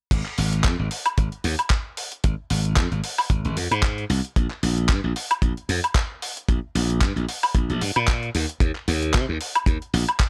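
Sleek and cosmic, this nu-disco excerpt from a longer piece rides a swung sixteenth-note groove in a drop, where an up-front, glassy slap bass, bright, growly and punchy with sidechain pumping, sits over a dry, tight acoustic kick with a rolled-off top and a dusty, sampler-style kit of crash, handclaps, hi-hat and woodblock that sounds gritty and overdriven, all set in a small room.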